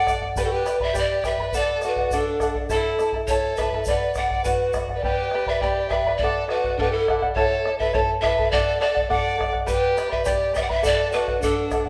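A breathy pan flute with a wooden chiff and a slightly unsteady, straight tone carries the wistful, melancholic melody of this Andean folk piece at 103 BPM in 2/4. A rich, smooth violin with vibrato plays a second line beneath it, while a shimmering fingerpicked charango supplies the accompaniment over a deep, saturated bombo. A grainy, close tube shaker drops out at 4.9 seconds and returns at 9.7 seconds, and the whole is set in a wet recital hall reverb as the chords move through G, D, A and Bm.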